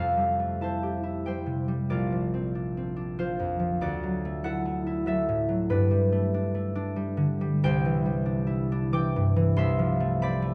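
A lone concert harp, fingerpicked, ringing and up front in a recital-hall reverb, plays a serene, peaceful classical passage at 94 BPM in a rubato 3/4, ranging from Bb1 to D6 through Fmaj9, Bbadd9, Dadd9, Gadd9 and Cadd9 before settling on Fmaj7/C at 9.6 seconds in this 10.5-second excerpt from a longer piece.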